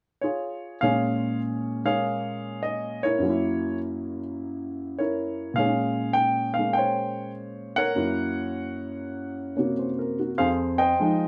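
Swung eighths loosened by rubato carry this smoky solo jazz fragment, cut from a longer piece, in which an intimate, woody upright piano sits up front in a moderate studio reverb, its action noise clearly audible as it plays from 0.2 to 11.3 seconds, moving through Bbm7, Gb7 and Bbm9 harmonies before settling on Fm7.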